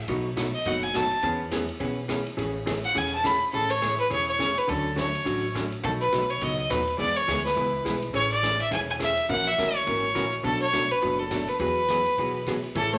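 A cheerful, down-home western swing excerpt opens with a clear, biting fiddle carrying the melody over a woody, thumpy upright bass plucked on gut strings, and the fiddle takes a solo through the first 3.5 seconds. A hollow-body electric jazz guitar, dark, clean and compressed, comps underneath with fingered chords. A swinging big-band drum kit with a punchy kick, a medium-tuned snare, hi-hat and ride keeps the brisk 4/4 groove bouncing in a natural studio-room sound. The single bowed fiddle stays up front, intense and touched with light vibrato, as the harmony moves through chords such as B7, Amaj7, F#7 and Bm7 before landing on Eadd9. In the last moments, from 12.8 seconds, a picked second guitar line slips in up front, and a generous large studio reverb gives the performance a roomy sheen.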